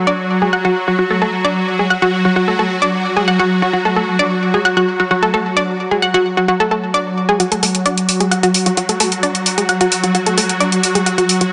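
A swarming, detuned drone opens this dark, industrial slice of driving peak-time techno, its sine-based unison layers sustained and granular, with a tense, evolving quality and its own built-in reverb. Almost at once an up-front analog pluck takes up a riff, a round sawtooth and square-wave sound with a sub octave, a fast attack and a short filtered decay, thickened by chorus, tube saturation and delay. The pluck stays bright and forward over the drone, carrying the music through its opening stretch on a single minor chord in straight 4/4. At 7.4 seconds an overdriven, layered electronic hi-hat enters for a build-up, sitting up front with a low-pass filter and studio reverb. A moderate plate reverb gives the whole a sense of space, and the top end stays dulled, so the sound feels heavy and shadowed until the cut at 11.5 seconds, partway through a longer piece.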